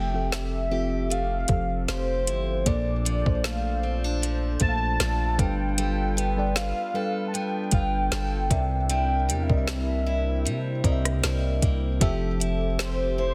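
Dense and heavily limited with a digital ambience, this tender, dreamy contemporary R&B excerpt at 77 BPM in F major sets a velvety, detuned synth lead with chorus and delay carrying the melody over a round, dark FM electric piano treated with chorus and phaser, a hollow, flute-like pad, picked steel-string acoustic guitar arpeggios with audible finger squeak, a deep sine 808-style bass, and an up-front produced drum kit that enters at 0.3 s with soft kick, woody snare with soft clipping, rim click and metallic hats, moving through Fmaj9, Bbmaj7, G9 and C7 before returning to Fmaj9 at 12.0 s.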